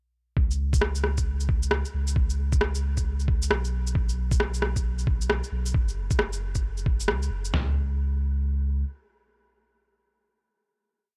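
Ghostly and melancholic, this short future garage piece at 134 BPM with a 62% swing sets a muffled, thumpy two-step kit of kick, snare and floor tom against skittering, overdriven shaker and rim clicks, while a deep, round sine sub bass with sidechain pumping carries long gliding notes through the groove until its final note rings out from 7.5 to 8.8 seconds, all captured in a dry, gritty sound with cassette tape character.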